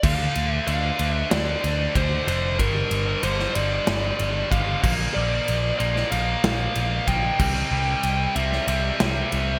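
Bright, 1980s-style digital production with light small-room reverb frames this aggressive, menacing hard rock excerpt at 94 BPM, where a scooped, high-gain guitar riff and a growly picked bass sit up front over a big rock drum kit with gated reverb, punchy kick and bright cymbals, while a biting lead guitar with overdrive and digital delay carries the melody through a Dm, Gm, Bb and C progression across 9.6 seconds.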